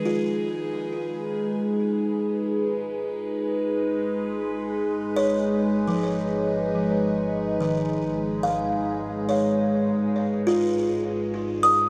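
This ambient piece, cut from a longer work, drifts in free time in G# dorian with a serene, reflective mood. An evolving wavetable pad holds sustained chords up front, its bright, sine-based tone morphing slowly under a phaser, its own reverb and a shimmer reverb, with slow attacks and long releases. Alongside it, a buzzing kalimba plays thumb-plucked arpeggios across a broad span, its woody, hollow-box ring trailed by tape echo. At 1.6 seconds a dark double bass section fades in on a low G#, bowed sul tasto with vibrato and kept in the background. The harmony moves from G#m6 to G#m as the bass arrives. A huge, wet ambient reverb with a long tail surrounds the mix, and the overall production is dark and warm.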